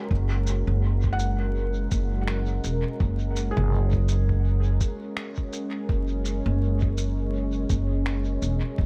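A relaxed 4/4 pulse with a gentle sixteenth-note swing carries this peaceful, hazy ambient dub excerpt, cut from a longer piece and resting on a single F# chord. A muffled, thumpy electronic kick and a woody pizzicato upright bass arrive from the opening moments, the bass sitting up front and holding low in its deepest register. A deep, dark pad with a slow attack and long release sustains chords underneath, its detuned sawtooth layers thickened by chorus and its own reverb. Sampler-style shaker, finger snaps and congas enter at 0.5 seconds, compressed and tape-softened, their hits trailing off in dub echo. At 1.1 seconds a felt-muted upright piano joins with soft, intimate arpeggios, its short sustain and audible hammer action also scattered through echo. The mix is dry rather than roomy, echo-heavy and dusted with vinyl crackle.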